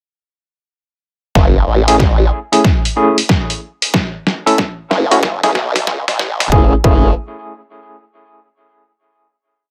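Gritty, lightly reverberant and filtered in the low end, this swaggering glitch hop piece at 93 BPM in F# minor builds from 1.4 seconds with a punchy, tape-warm electronic kick, a compressed, pitched-down sampler-style kit of closed hi-hat and snare playing a swung beat with edits and a drum fill, and a detuned formant-sweep wobble bass with chorus shifting its wobble speed. At 1.9 seconds, barky, overdriven tine electric piano stabs join with fast tremolo, sidechain pumping and delay, and the music moves from F#m7 through a filter sweep to a final F#m9 chord at 6.5 seconds.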